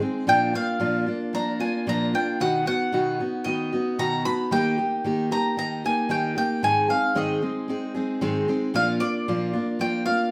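Acoustic folk with a pastoral, nostalgic mood, this short passage from a longer piece sets a bright, freshly strung picked steel-string guitar up front in accompaniment beneath a warm, double-strung bowl-back mandolin that takes a solo from 0.3 seconds, both held in a moderate large-studio reverb as the chords move through Bb, B, Eb and Ab before returning to Bb.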